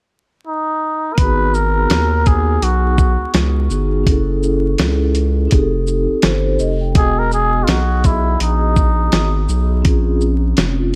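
Hip hop in a smoky, mellow jazz-hop style, this fragment from a longer piece opens with a raspy, veiled cup-muted trumpet carrying the melody through tape echo from 0.5 seconds, before a vibraphone with soft mallets adding ringing, vintage accompaniment with slow motor vibrato, a thick, saturated sub bass and a gritty, compressed sampler-style drum kit (thumpy kick, fat snare, hi-hat and shaker) all join at 1.2 seconds on swung 16ths, beneath steady vinyl crackle in a dry sound.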